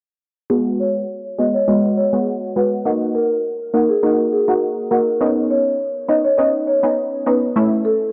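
A dry, gritty recording with a touch of studio reverb frames this hypnotic, bouncy dancehall excerpt in G# minor at 102 BPM. Punchy, detuned sawtooth chord stabs with chorus, phaser and a low-pass filter sit up front from 0.5 seconds, full-bodied yet mellow, moving through G#m7, D#m/A#, Badd9 and A. From 0.8 seconds a woody marimba carries the melody with medium mallets on rosewood bars, its boxy small-room tone softened by a low-pass filter and trailed by tape echo, while a filter sweep runs through the whole passage.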